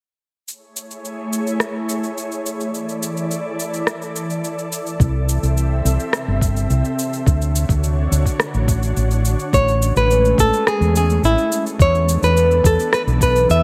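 Smooth and relaxed, this sunset chillout excerpt opens with electronic cabasa and rim click under an airy, warbling pad whose detuned chords carry ensemble chorus and built-in reverb, before a dark, growly fretless electric bass sits up front alongside a soft, tape-warm electronic kick from 5.0 s, and at 9.5 s a fingerpicked classical nylon-string guitar takes the melody through tape echo, all set in a light reverb.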